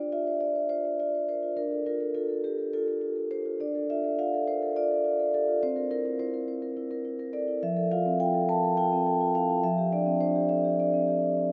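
In a rubato 7/8 pulse near 209 eighths per minute, this flowing, reflective excerpt of contemporary classical music for solo vibraphone sets soft mallets and a motor-off tone ringing mellow and dark, up front across F3 to A5, through Dm7, Gm9/D, C7, Fmaj7 and Csus2/F, all bathed in a wet cathedral reverb with a 4.9-second tail.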